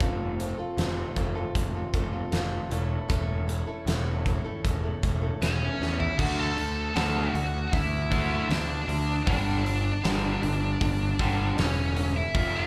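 This is a live club gig heard through the venue's PA, carrying club reverb and a touch of studio reverb, cut from a longer piece of quiet-loud alternative rock at 78 BPM in a straight 4/4 that feels anthemic and bittersweet. A boxy, picked acoustic archtop guitar plays arpeggios over F and A/E, sitting under a fuzzy, punchy electric bass that is overdriven and up front. A huge arena drum kit with a fat snare, punchy kick, hi-hat, toms and crash cymbal rings out in a big, natural room. At 5.4 seconds a dark, high-gain lead guitar with distortion and slapback echo enters with the melody, and a drum fill at 5.8 seconds ushers in the second section at 6.2 seconds. There a crunchy overdriven guitar adds a riff in the background with its own slapback echo as the chords move to D and then G5.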